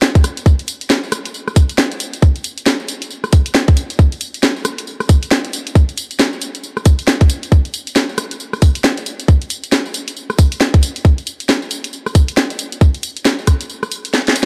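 A tight, layered electronic kick drum sits up front in this skippy, bouncy UK garage excerpt, entering at 0.2 seconds and driving a 4/4 groove at 136 BPM with a 61% swing on the sixteenths. Around it, an equally forward garage drum kit of hi-hat, rim click, tambourine and a cracking snare fills out the pattern with a produced, electronic character. Both parts carry a small room ambience, and the whole production sounds dark under a light reverb. The kick drops out at 13.7 seconds, leaving the kit to carry a short drum fill from 14.1 seconds as the section closes, a cut taken from a longer piece.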